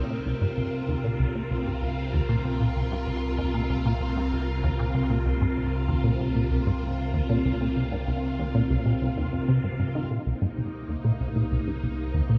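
A plucky analog bass drives this mysterious, hypnotic piece of sequencer-driven space music, its punchy, funky sawtooth riff shaped by a filter pluck and a moving notch, coloured by ensemble chorus and trailed by delay. Around it, a phased string machine holds sustained chords with a swirling, vintage warble, bright and up front despite its slow attack. Beneath them, a round sine sub bass sits on a deep C, given tube saturation, while a breathy, wind-like tuned noise texture drifts high above in its own built-in reverb. The tempo is a steady 96 BPM in straight 4/4, in C minor. The harmony rests on C7(no3) before shifting to Cm7 at 10.1 seconds, where this fragment of a longer work moves into a new section. A moderate plate reverb and an echo-heavy mix give the whole a spacious, floating quality.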